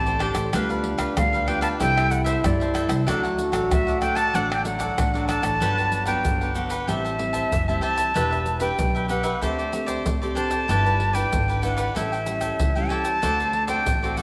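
An airy, vibrato-laden jazz flute sits up front from the start over crisp picked cavaquinho, fingerpicked classical nylon-string guitar with audible finger squeak, and a woody, growly pizzicato upright bass, setting a playful, festive samba and choro groove in G major at 94 BPM, tuned to A4 = 436 Hz. A close, dry percussion section of tube shaker, pandeiro, tamborim and a deep surdo played with hard hands joins almost at once, while a mellow, breathy trombone with scooped notes and tape echo adds a jazz-style second line from 0.5 to 5.6 seconds. The passage moves from D7sus4 and C6 into a Gmaj7, Am7, Em7 progression that closes on A7 and D7, all bathed in a wet echo-chamber reverb, and it is cut from a longer piece.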